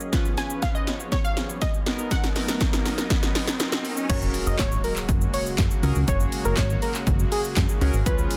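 Dance-pop, euphoric and summery, this short cut from a longer piece opens with a build-up as a punchy, overdriven analog drum machine plays a fill under airy soft supersaw chords and a glossy chorused polysynth, both pumping to the sidechain, while a bright, detuned unison pluck carries the melody through tape echo and a very quiet riser rises beneath. At 4.1 seconds the drop lands with a faint impact, a dark, chorused synth bass enters, and a thick, wave-folded unison lead with vibrato takes over the tune, the drums sitting up front with a short room on the snare, clap and hats. The dense, heavily limited modern master is bathed in digital ambience.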